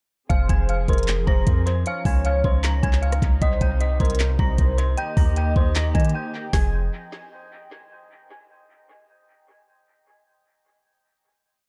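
Trap hip hop in F minor at 154 BPM with a half-time feel, hard-hitting and dark, where an eerie, inharmonic detuned synth bell loops its octave-doubled melody through chorus, low-pass filter and dub echo, a velvety detuned synth lead adds a sparse counter-melody with phaser and vibrato, muted con sordino strings hold veiled sustained chords over Fm, Dbadd9, Cm and Eb, a boomy 808-style bass follows the knocking kick with long sub notes, and an up-front trap kit of woody snare, handclaps, rim clicks and crisp hats with fast rolls drives the echo-heavy digital ambience until a break at 6.1 seconds and a final Fm chord at 6.5 seconds.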